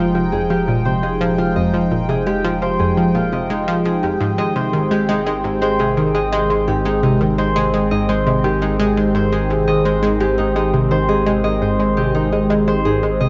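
Ambient, sequencer-driven space music with a cosmic, expansive mood, set in a straight 4/4 feel and tuned to A4 = 439 Hz. A phased analog pad holds sustained chords throughout, its detuned sawtooth tone swirling and warbling through phaser and chorus with a slow, vintage bloom. Up front, a fingerpicked Celtic harp plays ringing arpeggios through tape echo, while an analog pluck repeats a riff in a lower register, its bright, wave-folded attack decaying quickly under chorus and tape echo. Beneath them, a deep, round sine sub bass sustains with tube saturation, sitting lower in the mix than the other parts. The harmony moves from Fm9 to Abmaj7 at 4.2 seconds, the whole 13.3-second passage bathed in a wet plate reverb with a rolled-off top end, and it is cut from a longer piece.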